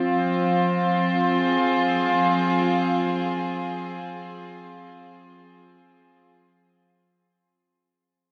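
Luminous and serene, this brief ambient fragment is cut from a longer piece and lasts about 7 seconds. A chamber string section plays alone throughout, bowed as an ensemble in a period style, with a gut-string tone, a reedy edge and light vibrato. The strings sit between F3 and Ab4 and are tuned to A4 = 444 Hz. A tape echo trails behind them, and a wet cathedral reverb with a 5.0-second decay places the ensemble in a vast, echoing space. The whole passage fades out from 0.0 to 7.0 seconds.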